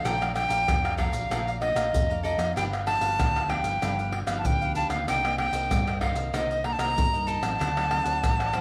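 A breathy, bright flute leads this samba and choro excerpt in G minor at 95 BPM from the first beat. It carries the melody between Eb5 and Bb5 with vibrato, a soft attack and a reedy edge, sitting close and up front under plate reverb. From the start, a crisp, picked cavaquinho and a fingerpicked nylon-string guitar fill in the accompaniment. The guitar, with fresh strings and a full-bodied classical depth, sits in the background. Both carry a cassette-tape tint, and the cavaquinho also shares the plate reverb. A hollow-body, short-scale electric bass, dark, round and amped, anchors the low end from G1 to G2. At 0.1 seconds the percussion arrives: maracas, pandeiro and tamborim over a deep surdo, heard acoustic and distant in a large room. The harmony moves through Bbmaj7, G7b13, Cm9 and D7b9 in a straight 4/4, and the light reverb and home cassette recording lend a bittersweet, nostalgic mood.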